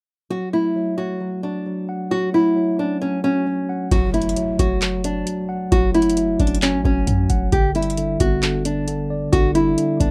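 Trap hip hop in a dark, melancholic half-time feel at 133 BPM in F# phrygian: a small, fingerpicked nylon-string guitar melody with audible finger squeak sits up front over a mellow tine electric piano until a booming analog drum machine with deep kick, metallic hats and handclaps enters at 3.9 s, joined by a clean sine 808-style bass with a fast attack and a background electronic impact, as the harmony moves from F#m to G at 7.5 s in a rough home demo mix with light reverb.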